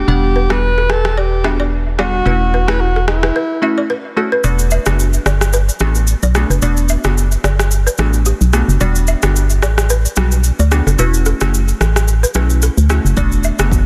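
A dry, dense and heavily limited mix opens this hypnotic, sultry afrobeats excerpt at 110 BPM with a lilting sixteenth-note swing, moving through Em7, B7sus4/E and Gmaj7/E over a dark, hollow FM bass that sits up front with an organ-like, percussive bite. A breathy, mellow alto saxophone with vibrato sings the melody through tape echo until 3.9 seconds, while a glassy, crystalline wavetable pluck adds chorused, ring-modulated accompaniment with a filter sweep, and a woody balafon played with hard rubber mallets repeats a round, echoing riff. The electronic afro-pop kit brings rim clicks, shaker and a deep, tape-warm kick, and after a short break the kick drops out from 4.4 to 13.2 seconds as the second section rides on the bass, pluck, balafon, rim clicks and shaker.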